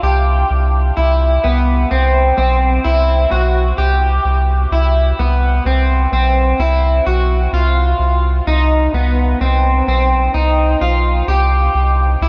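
A twangy, slightly broken-up electric guitar sits up front, picking arpeggios through lush chorus and digital delay across Cmaj7, F5/C and C5 in this dreamy, ethereal dream pop fragment. Beneath it, a deep, round sine-like sub bass holds sustained low notes with a fast attack. A huge ambient reverb with an 8.2-second decay and dark, warm production give the music a floating, hazy glow.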